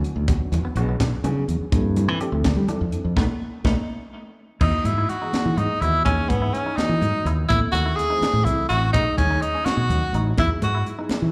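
Rolling in a straight 6/8, this soaring, funky electric jazz-fusion clip from a live club gig sets a tight funk kit with a high-tuned snare, a punchy fingered bass up front, ringing congas, a reedy electric piano with fast tremolo and slapback echo, and twangy guitar stabs steeped in lush chorus and tape echo, until a band accent and drum fill lead at 4.6 seconds into a bright tenor saxophone solo full of vibrato and scooped notes, riding over the continuing groove.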